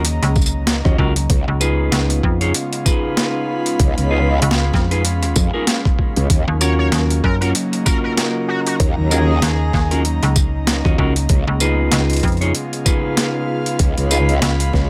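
A swung 16th-note groove at 96 BPM in 4/4 drives this gritty, swaggering glitch hop excerpt, where an overdriven, pitched-down boom bap kit with a high-tuned snare, rim click, hi-hat and tambourine sits up front beside a thumpy electronic kick entering at 0.4 seconds, while a snappy, metallic FM slap bass and a growling, wobbling, saturated bass arriving at 0.9 seconds anchor the Ebm7 to Db7 changes, clean picked electric guitar stabs with 12-bit sampler grit and tape echo pump against the beat, a dark, warbling lo-fi pad holds sustained chords beneath an airy, breathy pad texture, and an edgy, tearing sync lead with vibrato and tape echo cuts through with a bright melody from 6.6 seconds, all in a light reverb.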